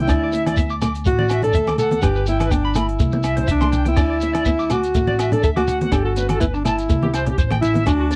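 The recording is dry and close, with the intimate feel of a 1970s studio, and this short section is cut from a longer highlife guitar band piece with a joyful, warm mood and a lightly swung sixteenth-note lilt. Up front, a jazz-style alto saxophone carries the melody with a soft attack, gentle vibrato and a smooth top. Beneath it, an electric guitar at the edge of break-up picks twangy tremolo arpeggios, while a small fingerpicked nylon-string guitar sits in the background with audible finger squeak. A woody, growly pizzicato upright bass anchors the harmony as it cycles through Dsus2, Gadd9 and C, then repeats from Dadd9 at 4.0 seconds. A compact cocktail drum kit with a dark, smooth sound and punchy kick enters at 0.1 seconds, alongside a grainy, mellow shekere and ringing, saturated agogo bells, while thick-skinned, low-tuned congas join softly in the background at 0.5 seconds.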